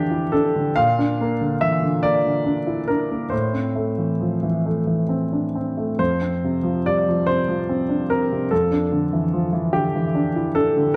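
Moving in a slow, rubato 6/8, this short passage cut from a longer neoclassical minimalist piano piece feels hopeful and tender. A solo grand piano plays throughout, sitting up front with a clear, intimate tone and audible action noise, touched by a slapback echo and light reverb within a dark production. The harmony drifts from Dmadd9/F through Bb, Am and F5 before returning to Dmadd9/F near 8.5 seconds.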